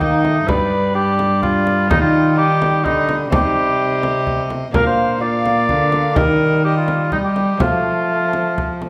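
This festive, courtly excerpt of a renaissance-style consort dance moves in a straight 3/4 at 126 BPM, with all six parts sounding together from the very start and running for about 8.9 seconds. A mellow cor anglais sits up front carrying the second line, distant and roomy in a classical style, while a rich violin with light vibrato and a reedy gut-string tone plays the melody from further back in the mix. Beneath them, a delicate fingerpicked lute with double gut strings and some octave-doubled courses supplies accompaniment alongside a vibrato-tinged bassoon, which lends a warm, distant hue. A bowed cello in period style anchors the bass, and a deep, large frame drum sounds close and dry against the rest. The harmony moves through G, Eb, C minor, Bb, Eb and F, all set in a wet recital hall reverb that gives the consort a spacious bloom.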